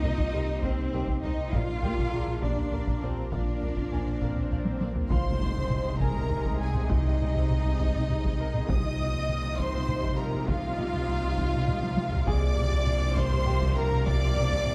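Lush, vibrato-rich violins carry the melody over a second violin line in this brooding, futuristic 6/8 film cue blending orchestra and electronics, supported by distant violas, dark, roomy French horns, a swirling analog pad with phaser and chorus, a very quiet nasal gliding synth bass, rich cellos, a round sub bass, soft-attack double basses, close and dry taiko, and a faint, brilliant, worn grand piano, while an electronic swell and impact arrive between 3.9 and 6.9 seconds, all set in a warm scoring-stage space.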